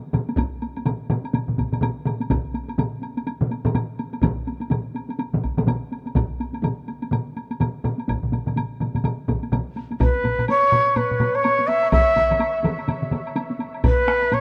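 Driving and powerful, this Japanese traditional taiko drum ensemble piece moves at 125 BPM in 4/4 with a 16th-note swing, cut from a longer work. Solo taiko drums struck with heavy sticks play from the opening alongside several taiko ensemble parts, some played with hard sticks and close, dry, others with heavy sticks in a small room, while a woody, dry woodblock sits quietly beneath them. One ensemble part drops out at 13.2 seconds as the rest carry on. At 10.0 seconds a new section opens with a breathy, reedy shakuhachi taking the melody between B4 and E5, its bamboo tone straight and soft in attack with rolled-off highs, placed up front and touched by tape echo. A huge ambient reverb surrounds the recording, lending the ensemble a sense of vast space.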